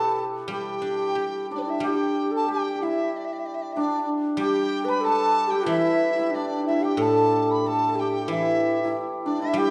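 Pastoral and graceful, this short cut from a longer Chinese traditional chamber piece drifts in a loose rubato around 93 BPM in 2/4, set in the G gong mode. A large dizi carries the melody up front with a hollow, buzzing-membrane tone, vibrato and tongued notes, while a breathy, close-miked xiao with a crisp attack and a shimmering hammered dulcimer weave second lines beneath it. A silvery, fingerpicked guzheng supplies ringing accompaniment, and the ensemble sits in a moderate stage reverb as the music moves into a new section at 1.8 seconds.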